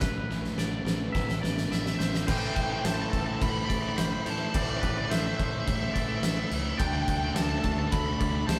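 In a straight 4/4 at 106 BPM, this cathartic, melancholic post-rock excerpt in A minor opens on Amadd9 with a build-up and drum fill that end at 2.3 s, when a mellow, clean fingered guitar's arpeggios stop and a crunchy overdriven guitar's riff enters in the background, joining an up-front, oversized low-tuned drum kit with boomy kick, fat snare and dark cymbals, a fuzz fingered electric bass, a very quiet thick fuzz guitar riff, twangy electric guitar arpeggios with vibrato, a very quiet bowed string section sustaining chords, and a nasal lead guitar with a parked wah carrying the melody from 1.7 s, the band playing together in a wet stone room as the harmony moves from Am to Dsus2.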